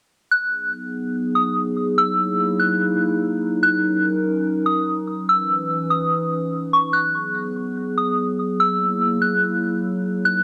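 A soft, pure FM synth bell opens the excerpt at 0.3 seconds, carrying a gentle, vintage melody high in its register with chorus, analog delay and a cassette-tape wobble. A warbling, dark pad of square and triangle tones joins at 0.8 seconds with slow-attack sustained chords carrying chorus and built-in reverb, moving through B6, F#13, D#m7 and C#m9. This blissful, dreamy lo-fi hip hop sits at 145 BPM in a half-time feel in B major, with both parts up front in a small, nostalgic booth sound taped at home.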